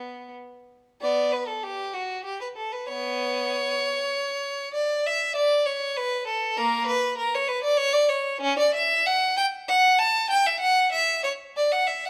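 Set in a lilting triple metre with a freely breathing rubato, this fragment of a baroque-style suite movement for unaccompanied violin unfolds in a serene, flowing mood. A single bowed violin carries the whole passage from 0.0 to 12.1 seconds, its clear, smooth tone shaded with vibrato and held to an even line. The player sits up front in the picture, caught by close, detailed microphones. Around the instrument, a moderate recital hall reverb of about 1.5 seconds lends a gentle sense of space. The result is an intimate classical reading that moves with a calm, serene flow.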